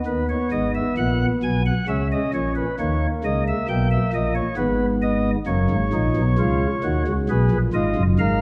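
A dark, reverberant recital-hall sound surrounds this brief cut from a longer baroque-style three-part fugue in 3/4, where a solo pipe organ on soft flute stops sits up front, its chiff and tremulant lending an elegant, lively character to lines ranging from F#1 to G#5.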